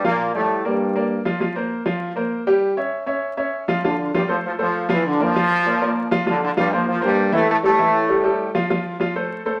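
A straight 4/4 pulse at 198 BPM drives this danceable, fiery Latin fragment in D minor, where a clear, woody upright piano with audible action noise accompanies up front throughout while a tight, brilliant trombone section carries the melody with light vibrato, first until 1.2 seconds and again from 3.8 to 8.5 seconds, the pair sitting in a wet studio reverb over a bed of vinyl crackle.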